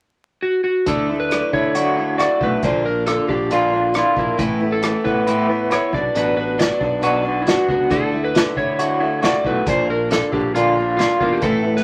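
A dark, slightly broken-up electric slide guitar, played with fingerpicks, opens this folk rock and heartland rock excerpt at 0.4 s, carrying the melody up front between E4 and D5. At 0.9 s the band joins: a picked steel-string acoustic guitar with an auditorium body picks out the accompaniment, while an electric guitar through a small old amp plays a lo-fi, up-front riff shaded with tremolo. Underneath, a modern fingered electric bass adds a bright, growly, direct low end, and an unplugged drum kit played with bundle sticks brings an airy, polished small-room sound with a punchy kick, medium-tuned snare, hi-hat and rim click. The song moves at a straight 136 BPM in 4/4 in D major, cycling through Dadd9, Bb, Asus2 and Bm. A moderate studio ambience and a layer of vinyl crackle give the whole a warm, nostalgic feel.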